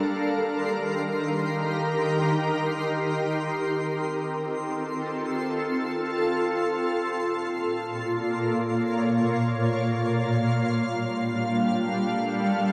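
In free time, this luminous ambient fragment in F mixolydian sets a shimmering, ethereal pad of detuned, chorused sustained chords moving from Eb through F and Bbm to Gm7 up front, while a faint, sparkling granular texture twinkles high in the background and fades out across the 12.7 seconds, all bathed in a wet concert hall reverb.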